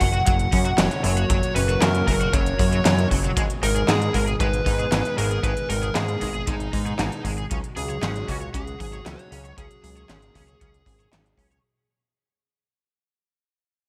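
Bright 1980s-style digital production with light reverb frames this driving, nocturnal synthwave excerpt at 116 BPM in straight 4/4, where a dark fuzz lead guitar with delay carries the melody over a shimmering, sidechain-pumped chorused pulse-width pad, gentle arpeggios from a soft round pluck, an overdriven semi-hollow guitar riff with hollow-body tone, analog chorus and delay, a nasal, detuned fat analog bass, a punchy, gritty kick drum and an up-front pop drum kit of handclaps, crisp hi-hat and snare drum treated with gated reverb, moving from F# through G#m to C#sus4 as the music fades out from 3.4 seconds.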